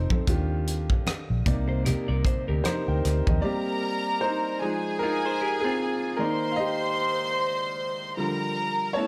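Lush 1970s-style soul with a silky, cinematic mood, this short cut opens on a clear, boxy baby grand piano over round, foam-muted electric bass, a tight funk drum kit of hi-hat, kick and rim click, and low-tuned, soft-handed congas in the background, riding a swung sixteenth feel. A twangy, slightly broken-up electric guitar riff through a small old amp enters at 1.7 s. At 3.4 s the bass, drums and congas drop out as the piano takes a solo beside a reedy studio violin section with light vibrato and gut-string tone, the whole piece set in light small-room reverb.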